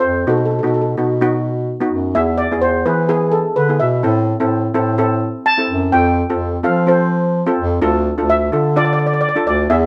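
A calypso excerpt opens with a lead steel pan carrying the melody, its mellow, airy tone struck with soft rubber sticks and trailed by a slapback echo. It sounds with a second steel pan playing accompaniment lower down with hard rubber sticks, with a boxier, shimmering edge, while a bass clarinet holds down the bass line with a smooth top in a classical style. The tempo is 127 BPM in 4/4 with a light sixteenth-note swing, and the mood is driving and dramatic. The chords move from B to E, then to A minor, F and D minor, and the steel pan takes a solo across the whole 9.9 seconds. All three parts sit up front in a dry outdoor setting with little reverb.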